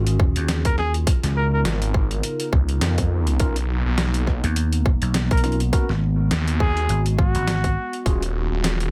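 A dry, close-sounding glitch hop excerpt at 103 BPM with a swung 16th feel, playful and swaggering, built on a dark, warbling tape-like pad whose chorused, detuned chords pump against a tight, up-front electronic kick and a gritty, pitched-down boom bap kit of hi-hat and medium-tuned snare. A punchy, growly slap bass runs from the start until 7.7 s, joined at 1.6 s by a thick, swirling phased saw bass, while chords move from Ebm11 through Db13, Bmaj9#11 and Abm7. A jazz-style trumpet with vibrato and tape echo calls out in two solo phrases, and from 3.4 s a worn, slightly out-of-tune tine electric piano adds lightly overdriven, filtered stabs.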